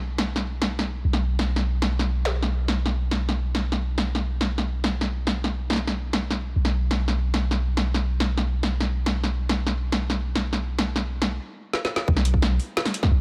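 A half-time drum and bass groove at 174 BPM in 4/4 drives this heavy, cinematic excerpt, built on an up-front drum kit with a woody snare and metallic hats, layered and re-recorded in a small room. Beneath it, a long, sustained 808-style bass holds a deep, mellow sine tone around B1 with a fast attack and decaying tail, thickened by tube saturation. After a drum fill at 11.7 seconds, the drop lands at 12.1 seconds as a tight electronic kick enters, all set in light reverb and tuned to A4 = 443 Hz.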